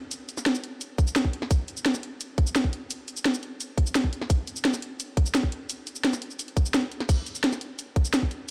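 Drum and bass with a lush, rolling mood, this short excerpt is built from an up-front, layered drum kit of crash cymbal, hi-hat, shaker and cracking snare, joined at 1.0 seconds by a tight electronic kick that drops out briefly at 6.7 seconds, both parts treated with studio reverb in a digital ambience.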